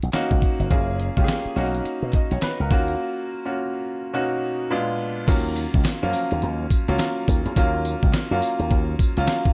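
Bouncy and slick, this short cut of new jack swing R&B rides a swung sixteenth-note groove in 4/4 with a dark, warm production and little reverb. A dusty, sampler-style drum kit sits up front, its compressed, gritty sound built on a thumpy kick and fat snare, with hi-hat, crash cymbal and tambourine filling out the pattern. Beside it, an electric slap bass runs through an envelope filter, bright and punchy with a direct, amped edge. A clear concert grand piano carries the accompaniment with natural tone and deep bass, moving through rich chords such as Bmaj9, Gbmaj7 and Ebm9 before a Bb7b9 leads into a fresh section at 5.3 seconds. A very quiet group handclap adds a hollow, human touch from a small room, and a break from 3.0 to 5.3 seconds interrupts the flow before the groove resumes.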